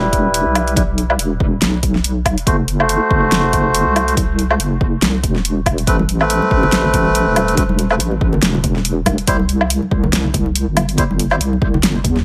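Swung half-time sixteenths at 141 BPM drive this dark, heavy deep dubstep excerpt, where a punchy, overdriven electronic kick plays alongside an overdriven, layered drum kit with a fat snare, hi-hat and woodblock that sits up front beside a deep, chorused wobble bass of detuned square and sine tones, while a reedy, breathy, close-miked melodica plays filter-swept stabs with dub echo over Em, F#dim, Amadd9 and C, and soft-handed congas and bongos join in the background from 6.0 s with their own dub echo, all within a light reverb.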